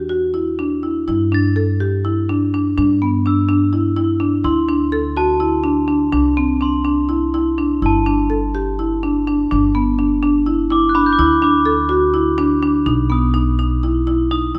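A dark pizzicato upright bass opens this restless, hypnotic passage of contemporary chamber music in 7/8, running at 249 eighth-note beats per minute, with a marimba's rosewood arpeggios, percussive, boxy and up front, arriving almost at once. From 1.3 seconds a glockenspiel played with soft plastic mallets adds a bell-like, vintage ringing texture high above. The close, detailed sound sits in a moderate recital hall reverb as the harmony moves through G, D, C and B, and the piece is cut from a longer work.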